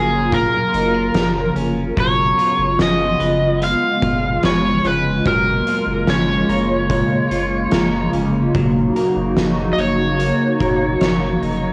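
Ethereal, floating dream pop at 73 BPM in a straight 4/4, this excerpt from a longer piece sets a bright, overdriven slide guitar melody up front over a hollow, flute-like pad with ensemble chorus, twangy arpeggios from an electric guitar at the edge of break-up, a round sine sub bass, and an oversized low-tuned drum kit with a boomy kick and fat snare entering at 0.3 s, all drifting through D#m7/F#, C#7/F# and A#m7/F# in a wet room, with the guitars carrying analog delay and the guitars and pad bearing the tape haze of a home cassette recording.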